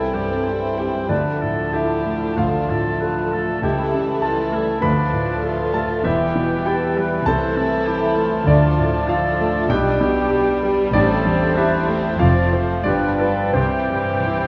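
Lush and lyrical, this classical excerpt moves in a rubato 4/4 at roughly 83 to 102 BPM, moving from C through Dm, Am/C and G7 back home to C. A smooth, vintage-toned grand piano sits up front and carries the melody across a broad range, joined by a floating, pure violin section sung sul tasto in the background. Beneath them, woodwinds weave second lines: a silvery flute with vibrato, a distant, roomy oboe and clarinet, alongside a darker, woody violin section that stays very quiet. Accompaniment comes from a hushed, intimate viola section and a solo bassoon, while a loose French horn section holds soft sustained chords and rich double basses with cellos anchor the bass until 14.1 seconds. Soft-mallet timpani add round, quiet touches at 7.3 seconds and in a closing fill from 13.6 seconds, and a concert hall reverb bathes the whole ensemble.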